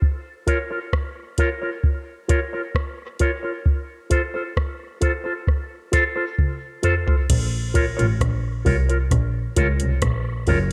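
A dry, analog rhythm box opens this meditative dub reggae piece at 66 BPM in Bb harmonic minor, its deep kick, metallic hi-hat, rim click, toms and crash cymbal sitting up front. It is soon joined by a bright, twangy electric guitar, clean and picked through an envelope filter with dub echo, over Bbm and F chords. After a drum fill, a bowed double bass enters at 7.3 seconds with a rich, close, expressive tone, soft attack, vibrato and portamento, while the room stays nearly free of reverb for a present, hypnotic feel.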